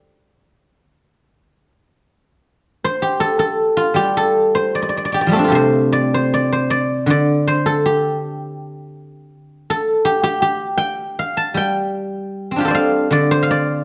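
A silvery, ringing guzheng played with fingerpicks sits up front in this longing, elegant fragment of Chinese traditional solo music, sounding briefly at the start, then pausing before returning from 2.8 seconds through to 13.8 seconds in a free, rubato flow, all set in a dark production with a moderate recital hall reverb.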